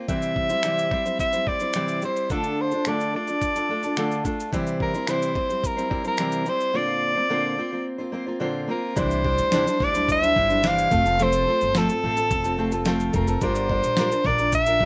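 A fingerpicked steel-string acoustic guitar, up front with audible finger squeak, opens this carefree, heartfelt acoustic pop piece, joined almost at once by a punchy soprano saxophone singing the lead with vibrato and a smooth top, and by a gritty, overdriven sampler-style drum kit of finger snaps, thumpy kick, fat snare and shaker, before a woody, growly pizzicato upright bass enters at 9.0 seconds, all set in a light reverb.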